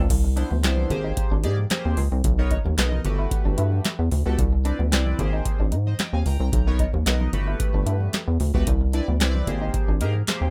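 This rough home demo has a dry, unpolished sound. It is cut from a longer early-eighties boogie funk piece that feels good and danceable at 112 BPM in a straight 4/4. A booming analog drum machine sits up front with a deep kick, a tonal snare, metallic hi-hats, handclaps and crash cymbal, and a short room on the snare, clap and hats. Very quiet, low-tuned congas ring close underneath, while a rubbery, hollow square-wave bass, dark and bouncy with a filter pluck, holds the low end up front from the start. From 0.4 seconds a glossy, retro polysynth adds mellow chords through chorus, phaser and plate reverb, cycling through Cmaj9, Abmaj9, Bmaj9 and Gmaj9. Tucked in the background, a compressed, picked electric guitar at the edge of break-up plays a riff with a subtle chorus.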